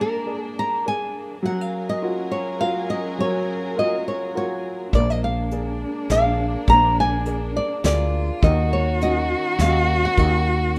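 In a 3/4 sway at 103 BPM, this intimate, reflective acoustic folk-pop ballad excerpt opens with a dark, fingerpicked flamenco guitar carrying the melody up front over a smooth, vintage grand piano and a warm chamber string section holding sustained sul tasto chords, moving through Bb7, Gbmaj7 and Ebm7. At 4.9 seconds a nasal, expressive solo cello adds a bowed second line with vibrato and portamento, while a round, woody fretless electric bass and an airy, polished soft brush kit with a punchy kick join in. A moderate large studio reverb gives the whole a roomy glow.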